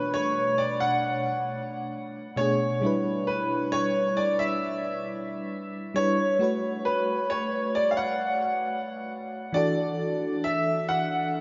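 Set in a straight, unhurried 4/4, this moody, late-night R&B excerpt drifts through a short progression of Bm9, G6, A69 and E9sus4 across its 11.4 seconds. A clear concert grand piano carries the melody from the very start, sitting up front with an intimate, slightly boxy character, audible action noise, deep bass and long sustain, its line further dressed in lush chorus and delay. Beneath it, an FM electric piano with tremolo supplies the accompaniment throughout, its mellow, decaying tone built on a fast attack with a noise layer. Both keyboards stay close to the listener while a cathedral reverb with a 5.2-second tail soaks the whole mix. The sound is dreamy and dark at the top, leaving a hazy, nocturnal glow that feels lifted from a longer piece.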